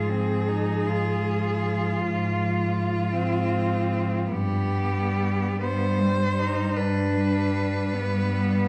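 Elegiac and yearning, this brief classical passage for a cello ensemble of four single players is cut from a longer piece and unfolds in a flexible 12/8 with a rubato feel. All four cellos are bowed with vibrato and play smooth, even lines together from the start until 8.7 s. The melody cello sits up front in the upper register, while the second line and the bass share its rich tone; the second line sounds more distant and the bass sounds close and up front, anchoring the low end. The accompanying cello has a clear tone and sits back in the middle of the texture. The harmony moves from F minor over an A-flat bass to G at 4.3 s, and the moderate reverb of a recital hall gives the dark production a sense of space.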